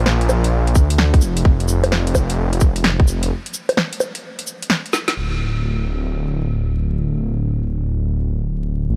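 Vinyl crackle hangs over this nocturnal, melancholic future garage excerpt at 129 BPM with a 16th-note swing, where a menacing, detuned sawtooth bass with tube saturation and sidechain pumping swells up front throughout, joined by a tight electronic kick and a low-passed garage kit of woody snare, metallic hi-hats, cabasa and woodblock that drops into a break at 3.3 seconds, plays a fill at 4.9 seconds and lands a band accent at 5.1 seconds before the bass carries on beneath the crackle.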